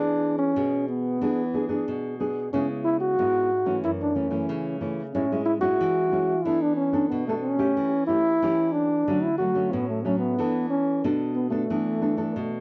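A joyful, playful samba at 92 BPM in straight 4/4, this 12.6-second excerpt sets a dark, punchy trombone solo with light vibrato and a smooth top, played forcefully in jazz style, up front against a thumb-plucked classical nylon-string guitar with fresh strings, moving through chords like C#m7, Amaj7 and Dmaj7 in a dry, close 1970s-style studio sound.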